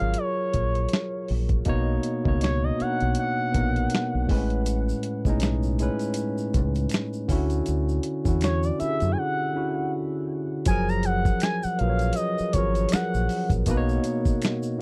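A smooth sawtooth synth lead carries this slow neo-soul and R&B piece at 80 BPM in F# major, its chorus, vibrato and tape echo giving the melody an expressive, mellow voice. Beside it, a bright, barky tine electric piano, lightly overdriven through a combo amp, lays down rich ninth chords. A deep, round, dark fingered electric bass and a gritty, tape-toned sampler-style drum kit with a thumpy kick, medium-tuned snare, hi-hat and finger snaps sit up front. The groove has a gentle 16th-note swing and a soulful, warm mood. A faint, compressed and saturated tube shaker and finger snaps join at 4.7 seconds, and after a short break a very quiet glass harmonica enters at 10.7 seconds with glassy, ethereal sustained chords. The sound is dry and close, like a 1970s studio session, and the passage is cut from a longer piece.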